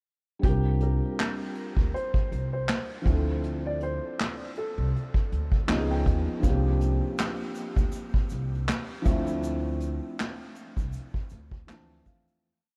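Hazy, reflective lo-fi hip hop at 80 BPM in D minor with a gentle swing, where a dark, woody upright piano plays a short looping melody through diffuse ambient delay until 5.7 s, over held rootless chords and short fills from a thick-felted, muted upright piano with audible action noise, a sparse, thumpy gut-string pizzicato upright bass line, and a slumped, off-grid brush kit up front with a punchy kick and clap-layered snare, while a grainy egg shaker enters in the background at 6.4 s before the cassette-tinged piece fades out from 9.4 s.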